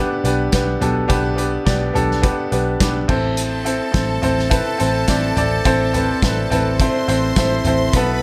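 Swung sixteenths at 105 BPM in 4/4 drive this dramatic piano-driven pop passage in A minor, where an intimate, up-front concert grand with audible action noise and deep bass carries the accompaniment from G/B to Am at 3.1 seconds over a round, foam-muted picked electric bass and a loose indie drum kit with punchy kick, medium-tuned snare and a pumping room sound with a rolled-off top, before a clear, earthy violin section with light vibrato enters at 3.4 seconds as a second line, all set in light reverb and small room ambience.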